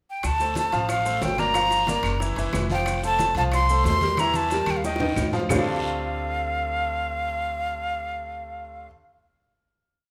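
The recording sits in a moderate large studio reverb, with a breathy jazz flute up front. This short, fiery and danceable salsa piece opens with a pickup, and the flute carries a motif-based melody of call phrases with vibrato, a crisp attack and a touch of chiff. A brilliant, polished grand piano with audible action noise and long sustain plays a montuno in octaves, while a dark, thumpy upright bass on gut strings plucks a tumbao that anticipates the chords. Low-tuned congas with slaps and open strokes, ringing metal-shell timbales on shell pattern and bell, very quiet round bongos in steady eighths with hand bell, distant claves on a two-bar time line, a raspy vintage guiro and grainy maracas fill out the percussion, with a drum fill from 4.2 s. The percussion stops at 5.6 s, leaving flute, piano and bass to hold the final chord from 5.5 s to 8.1 s, and they ring on until 8.9 s.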